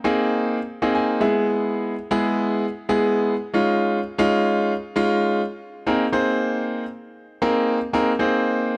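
Set in a small room with light reverb, this short, carefree and upbeat pop excerpt in Ab major at 116 BPM features a clear, intimate grand piano up front with audible action noise, playing solo through a build-up that includes a brief fill at 0.7 seconds and moves over Abadd9, E and Dbadd9 chords before a drop returns to Abadd9 at 5.6 seconds.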